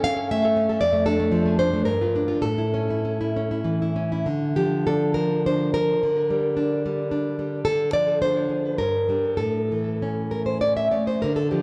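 In a rubato 3/4 that drifts between 96 and 119 BPM, this melancholic, passionate romantic fragment for solo classical guitar in D minor puts a bright, full-bodied nylon-string guitar up front, fingerpicked on fresh strings with audible finger squeak and tape echo, moving from its opening phrase into a new section at 4.3 s that settles on D minor and G minor before coming to rest on A, set in a moderate concert-hall reverb within a dark production.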